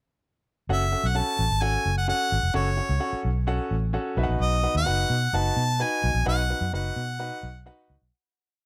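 Uptempo 1960s-style soul with a warm, danceable mood and a straight 4/4 feel, this short piece stays in a single pre-chorus that moves from F#m to B at 4.2 seconds. A bright, close-miked harmonica carries the solo melody up front in a pop style, built from song-like motifs and colored by light vibrato. A clear grand piano plays quarter-note chords in drop-2 voicings with grace notes, and its intimate, natural tone carries audible action noise. Underneath, a vintage muted fingered electric bass sits forward with a dark, round, foam-muted amped sound, playing a melodic, syncopated soul line with chromatic approach notes. Light reverb and small room ambience surround the parts before a fade-out from 6.3 seconds to the close at 8.1 seconds.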